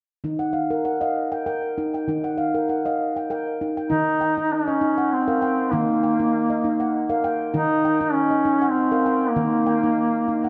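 This meditative world piece for tuned percussion moves at 99 BPM in a straight 3/4 over an Eb minor chord, with a hypnotic, gentle mood, and it is cut from a longer piece. A handpan opens alone at 0.2 seconds with ringing arpeggios from Eb3 to G5, its nitrided steel tone smooth and dark beneath sharp finger strokes, placed up front with a touch of delay. At 3.9 seconds a solo duduk enters with a folk-style melody between Bb3 and Eb4, its vibrato and scooped notes sounding both near and roomy, with a distant quality and its own delay. Both parts continue together until 10.5 seconds. A wet echo chamber reverb of 1.8 seconds and a small room ambience surround the performance, and the overall production leans dark and warm.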